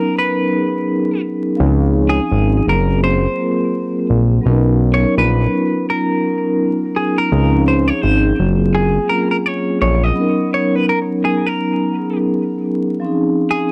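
Hip hop at 84 BPM with a swung sixteenth feel and a mellow, nostalgic mood: a clean, hollow-body semi-hollow electric guitar carries the melody with subtle chorus and analog delay over a ringing vibraphone with soft mallets, its slow motor vibrato softened by cassette tape, while a fat, detuned sawtooth analog bass with tube saturation enters at 1.6 seconds and drops out at 10.1 seconds, just before the break at 10.2 seconds, all over lush major-ninth chords in a dry, gritty recording flecked with vinyl crackle.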